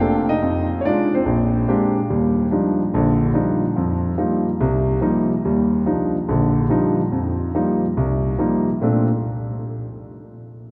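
A solo grand piano, natural and up front with a warm tone, swings through this relaxed jazz excerpt, playing alone from 0.0 to 9.1 seconds across a span from deep bass to the upper middle register. After an opening Fm7 to Bb13 turn, the harmony rocks between Ebmaj9 and F9sus4 before settling on Bbmaj9 at 8.8 seconds. A long, wet cathedral reverb surrounds the instrument, giving the sound the airy spaciousness of a church or concert hall.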